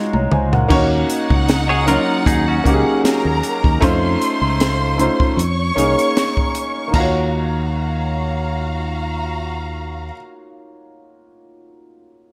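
Smooth and bittersweet, this lush 1970s-style soul excerpt moves at 77 BPM in Eb dorian with a light swing, opening on a drum fill from a compact cocktail kit with dark cymbals, a high-tuned snare and a punchy kick. An intimate grand piano with audible action noise and deep bass carries the chords from Ebm11 through F7b13 to Ebm9 over an up-front fingered electric bass, while a bowed violin section rich with vibrato and slapback echo enters at 0.7 seconds as a second line. A clean, compressed semi-hollow guitar plays a brief picked riff from 1.7 to 3.6 seconds, all set in light studio reverb.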